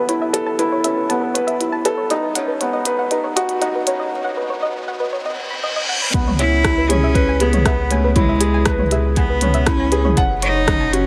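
Piano and strings electronica in C# minor at 119 BPM, this melancholic, hypnotic passage is cut from a longer piece and moves in a straight 4/4. A felt-muted upright piano sits up front with a soft, intimate riff, its audible action noise and short sustain trailed by tape echo, while a gentle, nasal pluck spins arpeggios above it through chorus, tape echo and sidechain pumping. A minimal click drum kit of clicky hi-hats, rim clicks and high-passed toms ticks along from the start, and an electronic riser and reverse cymbal enter at 3.3 seconds as a filter sweep builds over Aadd9 and Badd9 chords. The drop lands at 6.1 seconds on C#m7, bringing a deep, layered electronic kick and a round sine sub bass with tube saturation and sidechain pumping, before the harmony turns to F#m. From 6.4 seconds a single bowed cello carries a clear, smooth melody with vibrato, and a huge ambient reverb gives the whole texture a long, spacious tail.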